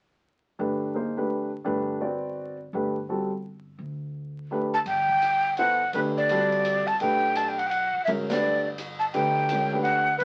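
Spiritual and hypnotic, this modal jazz piece in G major moves at 168 BPM in 3/4 with a swung eighth-note feel, opening on a Gmaj9 chord from an up-front, natural-sounding baby grand piano and a woody pizzicato upright bass. A breathy metal flute with vibrato and a soft attack takes the melody at 4.7 seconds, and an open acoustic drum kit with dark cymbals and a boomy kick joins at 4.9 seconds, leading to a band accent at 8.3 seconds. The sound carries the crackle of a very old 78 rpm record in a moderate studio room, and the clip is cut from a longer piece.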